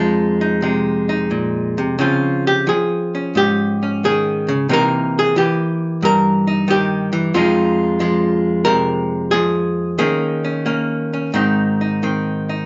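Solo jazz in F minor, this cool, late-night piece is cut from a longer performance and moves at 90 BPM in 4/4, with a swung eighth-note feel and a rubato looseness. A lone electric archtop guitar, miked through its amplifier, carries everything from its lowest F2 up to Bb4, its clean, picked tone dark and hollow-bodied and sitting up front in the mix. The harmony travels from Fm7 through Dbmaj7 and a tense C7#9 at 4.7 seconds, returning to Fm7 before settling on Eb5 and then Ab near the close at 11.3 seconds. The sound is captured live in a small room whose reverb adds a wet, intimate glow, while the rolled-off top end keeps the whole recording mellow.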